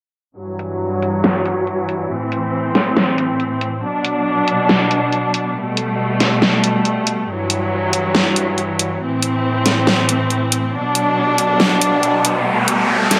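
A rich, bowed studio string section holds smooth sustained chords up front through a low-pass filter sweep. A layered electronic drum kit with a huge snare and filtered hi-hats joins at 0.6 seconds for an aggressive, chaotic, half-time, swung heavy wobble dubstep feel, before an electronic riser enters at 11.2 seconds, all set in a moderate plate reverb.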